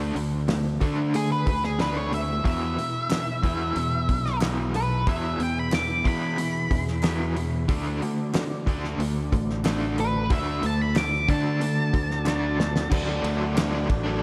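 Classic rock at 92 BPM, driving and sunny and cut from a longer piece, in which two overdriven rhythm guitars play a riff over D5, E and D chords: one is bright and compressed, the other a hollow-body with tremolo, and both carry slapback echo. Beneath them sit a growling, punchy fingered bass and a cloth-damped, thuddy drum kit with a fat snare and dark cymbals, while an up-front octave-fuzz lead guitar with slapback and tape echo takes a solo from 1.2 s. A very quiet, mellow tonewheel organ with key click and slow rotary speaker holds chords from 2.1 s, faint crisp group handclaps join in, and a drum fill at 12.3 s leads into a new section, with the whole mix set in a lush hall reverb that gives a big arena sound.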